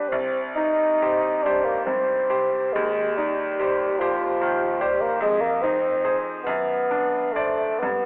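A mellow bassoon with light vibrato and a smooth top carries the solemn, melancholic melody up front in this romantic classical duo, set in C minor in a rubato 6/8 at around 42-50 BPM in dotted quarters. A brilliant concert grand piano with deep bass accompanies it throughout, moving from C minor through Fm7 to D7/F# by 6.5 seconds. The pair sits in a reverberant recital hall, yet the whole passage comes through with a narrow telephone-like sound, cut from a longer piece.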